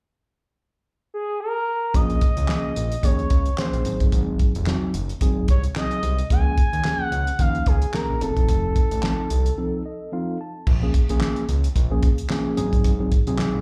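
A live club sound with small-room reverb carries this late-night, danceable early-eighties boogie funk excerpt in Bb minor at 110 BPM, where a smooth, gliding sawtooth-and-triangle lead with chorus, vibrato and slapback echo opens alone at 1.1 seconds before a mellow, clean tine electric piano, a fat, detuned, saturated analog bass with a filter sweep, and a dry, damped 70s drum kit with fat snare, tight kick and handclaps enter at 1.9 seconds, the piano filling a break from 9.6 seconds over chords moving from Bbm7 through Ab7, Db6 and F7.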